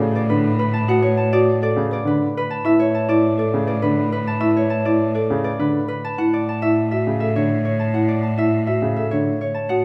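Moving at 102 BPM in a straight 3/4, this classical minimalist pattern piece has a hypnotic, propulsive pull, and the passage is cut from a longer work. A woody folk marimba, struck with medium mallets on hardwood bars, carries the arpeggios between E4 and B4 with a dry, rustic, boxy small-room character, and sits as the most prominent layer. Up front, an acoustic Celtic harp sings the fingerpicked, ringing melody between A4 and A5, while a rich, focused cello holds a bowed A2 bass with vibrato, sounding close and played by one musician. A warm grand piano accompanies low between C#3 and D3 until it drops away at 9.3 seconds, while the harp, marimba and cello continue to 9.8 seconds. The harmony moves from Bm7/A to E7sus4/A at 2.6 seconds and on to Dmaj7/A at 6.2 seconds over the steady A pedal. A wet, large studio reverb places the ensemble further back in the room.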